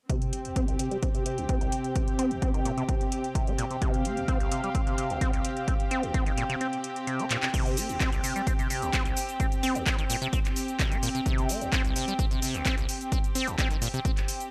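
A raw, driving acid house excerpt opens with a squelchy, resonant acid bass riff carrying a filter sweep, a punchy up-front kick, a booming drum machine with metallic hats, handclaps, shaker and crash re-recorded in a large room, a detuned sawtooth pad pumping with chorus and tremolo until 7.5 seconds, and a floating, bowed string section, set inside a dry, gritty recording with light digital ambience where the kick drops out at 6.6 seconds ahead of a drum fill at 7.3.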